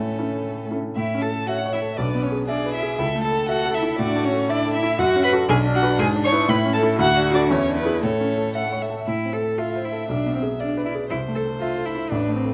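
A straight, brisk 2/4 pulse at 119 BPM drives this graceful, lively classical-period movement for piano quartet, heard in a short passage cut from a longer piece. A clear baby grand piano sits up front with a natural, short-sustained accompaniment ranging from A1 to E5. A warm first violin carries the melody from A4 to C#6, close and expressive, with vibrato, a soft attack and touches of portamento. A second violin, smooth and even with vibrato, weaves a supporting line lower in the texture. A rich, smooth-topped cello adds its own second line with vibrato. The music moves through A major harmony before turning to A minor at 9.1 s, all captured with close, detailed microphones in a moderate scoring-stage reverb.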